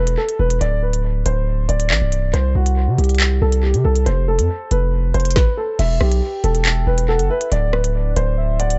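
Drill-style hip hop with a cold, menacing feel, moving in a half-time groove, cut from a longer piece. A dark, boxy grand piano carries the melody up front with analog delay, over a heavy, distorted 808-style bass with a fast attack and a noise layer, while an electronic drum kit of hard-clipped kick, woody snare, crisp hi-hats, handclaps, rim clicks and crash adds its own delay echoes. At 6.0 seconds a soft, round, octave-layered synth lead slips in behind them, coloured by chorus, phaser and vibrato, in a dry, echo-heavy mix with a dulled top end.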